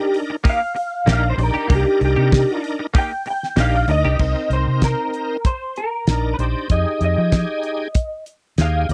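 Brooding and soulful, this short cut from a longer straight-eighth soul blues moves at 96 BPM in C minor, with a light swing on the sixteenths. A lead electric guitar through a small old amp carries the melody from the start, its dark, slightly broken-up, lo-fi tone sitting up front, while a bright tonewheel organ shouts underneath through a slow rotary speaker with overdrive and chorus vibrato. A damped 70s drum kit with a fat snare and tight kick enters at 0.1 seconds, and a direct-recorded clean guitar adds twangy, picked stabs until 4.2 seconds. The vintage muted fingered bass, round and foam-muted, comes in at 1.1 seconds and stays prominent through the end. Harmony rests on Cm7 before shifting to Fm7 at 6.7 seconds, all captured in a dry, close 1970s-style studio sound with little reverb.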